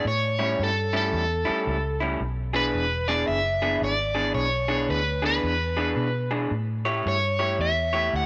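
A swaggering, gritty electric blues shuffle at 111 BPM opens with three parts together: a crunchy overdriven guitar carrying the melody through a harmonic tremolo, a slightly broken-up, lo-fi guitar from a small old amp picking the riff, and a dark, round, foam-muted fingered bass, all placed up front. The swung eighths move from A7 to E7 at 2.2 seconds and return to A7 at 6.5 seconds, with a light reverb around the short passage, which is cut from a longer piece.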